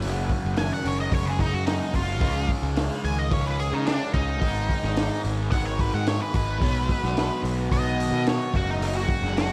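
Dark and hypnotic, this short cut from a longer psychedelic rock piece moves at 109 BPM over F#, C#, G#m and B, as an octave-fuzz lead guitar with wah and tape echo solos from 0.6 s above a bright, double-tracked phaser-laden fuzz riff, an up-front overdriven fuzz bass, a crunchy breakbeat kit with a high-tuned snare and punchy kick, a very quiet reedy combo organ holding chords, and a buzzing, shimmering tanpura drone, all set in an echo-heavy small room.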